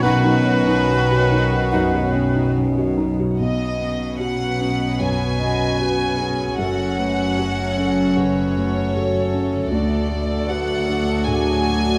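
A recital hall's moderate reverb surrounds close, detailed microphones in this tender, uplifting cinematic film score for orchestra, an excerpt cut from a longer piece that moves in a rubato 4/4 at roughly 71-78 BPM. A chamber violin section carries the melody with light vibrato, a soft attack and sul tasto bowing, while a clear oboe and an airy, hollow flute group add brief second lines that stop at 2.5 and 2.1 seconds. A dark, distant clarinet and a pure, floating studio violin section continue as background second lines, and a very quiet viola section sits alongside a felt-muted upright piano, soft and intimate with thick felt, in the accompaniment. A mellow French horn section holds sustained chords with a vintage tint, and a bright, ringing concert harp spins very quiet fingerpicked arpeggios. Underneath, a rich double bass section and a close cello section form the bass as the harmony moves from Badd9 to F#m at 6.6 seconds and D at 9.7 seconds.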